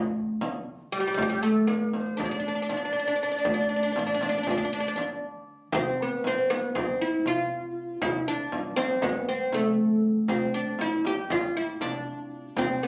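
Turkish makam ensemble music in a passionate, festive 9/8, cut from a longer piece, with a bright, woody oud carrying the melody up front over thumpy pizzicato upright bass and a deep, saturated frame drum. A breathy, reedy ney with vibrato adds a second line from 0.9 s until it drops out at 5.2 s, just before the music moves into a new section at 5.7 s. The sound is that of a phone recording in the room, with club reverb and compression.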